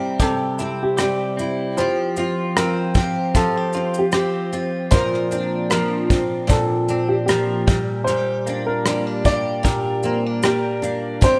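An intimate, woody upright piano with audible action noise carries the melody over a bright, double-tracked steel-string acoustic guitar with finger squeak and a clean, compressed electric guitar playing arpeggios with vibrato, joined at 0.2 seconds by an up-front brush kit with a punchy kick, rim click and shaker, in this heartfelt, easy-going acoustic pop excerpt at 76 BPM with a light 16th-note swing, moving through C, Fsus2 and Bbadd9 in a small room with light reverb and a rough home-demo feel, while a grainy tube shaker slips in, barely audible, at 11.2 seconds.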